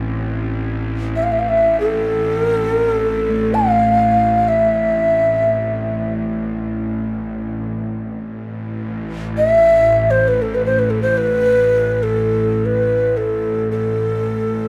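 This meditative world-music piece, cut from a longer work, has a haunting, unhurried feel. A string-like drone sounds from the start, low, tense and sustained, with a sawtooth edge, a detuned shimmer, a noise layer, vibrato and its own reverb. A bronze singing bowl rings alongside it in the background, struck with a wooden striker, its metallic tone slowly beating until it stops at 10.9 seconds. At 1.2 seconds a cedar flute enters up front, close and breathy, with a mellow, hollow wooden voice. The flute plays a straight-toned melody, each tongued note carrying a chiff. The whole sits in a wet but short studio reverb.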